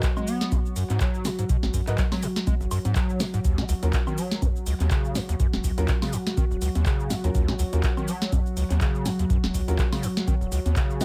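A lightly reverberant, tape-tinged mix carries this driving, trippy acid house excerpt in Eb minor, running at 123 BPM in 4/4 with a swung 16th-note feel. A deep electronic kick anchors a booming analog drum machine of congas, handclaps, shaker, woodblock, crisp snare and metallic hi-hats, with a short room around the snare, clap and hats and a drum fill at 3.2 seconds. Up front, a squelchy, gritty square-wave acid bass plays a resonant, distorted riff with a filter sweep, fast-attack decaying notes, analog chorus, digital delay and sidechain pumping. Beneath it, a smooth, detuned pad of sawtooth and wave-folded sine tones holds sustained chords, warbling with chorus, vintage 12-bit sampler grit and its own sidechain pumping. From 1.9 seconds a clear, intimate grand piano adds boxy stabs with audible action noise and digital delay. The harmony moves from Ab7(no3) to Ebm7 at 3.4 seconds.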